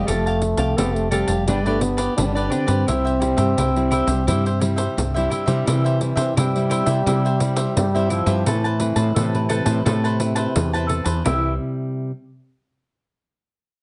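A mellow trombone takes the lead in this festive, sunny samba and choro excerpt, playing a jazz-style solo through the first 5.7 seconds with light vibrato, scooped notes and a smooth top. Underneath, a woody fretless electric bass sits up front with a round, hollow-body tone that is direct and amped. A crisp, picked cavaquinho and a fingerpicked classical nylon-string guitar, the guitar placed in the background, fill out the accompaniment. A jingly pandeiro, close and dry and struck with hard hands, drives the straight 4/4 groove. The harmony moves through Fadd9, G and C before shifting to Amadd9 at 8.5 seconds and returning to C. Light reverb and a soft, rolled-off top end shape the sound before the piece is cut off.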